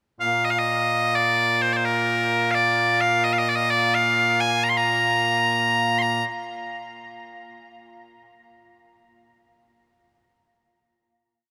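Loud, bright bagpipes carry this brief piece of Scottish traditional pipe music alone, their piercing, continuous tone sitting up front from 0.2 seconds. The mood is proud and ceremonial, moving at 86 beats per minute in a straight 6/8 lilt in B-flat major. After a short pickup bar, the pipes play a modal melody with ornaments across a single section, reaching from low Bb2 up to C6. They stop at 6.2 seconds, and a final note rings on until 7.4 seconds. A huge, wet ambient reverb surrounds the sound, giving it a long, echoing decay.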